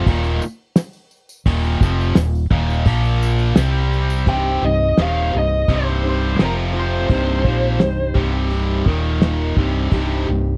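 A tight, double-tracked distorted guitar riff opens this swaggering, gritty classic rock excerpt, alongside a round, hollow-body fingered bass sitting up front, a cloth-damped, thuddy drum kit with a fat snare and dark cymbals, and a jingly tambourine in the background until 4.3 seconds. From there a nasal lead guitar with a parked wah, overdriven and touched by slapback echo, carries the melody until 8.1 seconds, while a picked, plugged-in steel-string acoustic guitar with audible finger squeak adds accompaniment. The sound is dry and close, in the manner of a 1970s studio recording.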